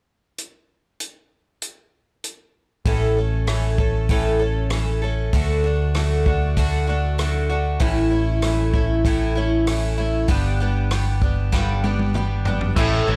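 A straight 4/4 groove from a vintage drum kit opens this folk rock and heartland rock excerpt at 0.4 seconds. Its natural studio-room sound is built from a tight kick, a medium-tuned snare, rim click, hi-hat, toms and dark crash cymbal, and it builds into a drum fill near the end. At 2.9 seconds a picked twelve-string acoustic guitar arrives up front with a boxy, shimmering, octave-doubled tone. At the same moment a deep dub electric bass enters, sounding round and sitting up front, and together they move through A, D, A and G. The mood is nostalgic and warm, and the production stays dry and dusky. From 12.8 seconds, just before the cut, a biting overdriven guitar enters with a bright, double-tracked riff, while a very quiet overdriven tonewheel organ adds thick, gritty sustained chords through a rotary speaker, its key click audible.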